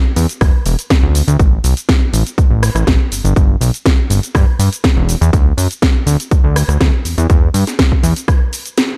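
A fat, detuned sawtooth bass sits up front in this sensual, nostalgic stretch of filtered disco house at 122 BPM in straight 4/4, its evolving filter pluck and sustained notes pumping against the sidechain between E1 and G2 from 0.2 s. A punchy electronic kick enters at 0.4 s, also up front, while a house kit of cabasa, hi-hat, rim click and cracking snare adds pumping hats and percussion; both drum parts are overdriven and re-recorded in a large room. The mix stays dry, tuned slightly low to A4 = 438 Hz, in a short cut from a longer piece.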